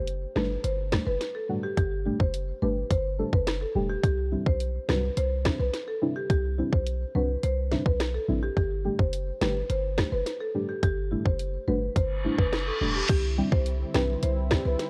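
Tight, up-front electronic drums with a sharp snare drive this sunny, summery dancehall cut at 106 BPM in G major, over a boomy, sine-based 808-style bass, dark, detuned chord stabs with chorus, phaser and sidechain pumping, and a woody rosewood marimba melody through digital delay, while a reverse cymbal at 12.2 seconds leads into a smooth, slow-attack analog pad that joins at 13.1 seconds, the mix carrying a worn, warbling cassette-tape drift and little reverb.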